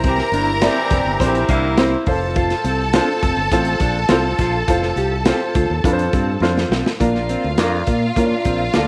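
Joyful and uplifting, this short cut from an uptempo 1960s-style soul track moves at 103 BPM in a straight 4/4, centred on Bb major. A crunchy breakbeat drum kit sits up front with a gritty, saturated character, a tight kick, a medium-tuned snare, hi-hat and a rolled-off top, while a bright, direct fingered electric bass anchors the low end. A dark upright piano with a woody, worn and slightly detuned tone, audible action noise and long sustain fills out the accompaniment, and a clean electric guitar plays a compressed riff touched by subtle chorus. A lush, bowed string section with smooth vibrato carries a second line from a distance, joined briefly at the start by a mellow, roomy saxophone section, and from 0.6 seconds a second clean guitar adds quiet stabs. The harmony moves from C7 to F, and a drum fill at 6.4 seconds leads into a new section landing on Bb at 7.0 seconds, all set in a moderate echo chamber reverb.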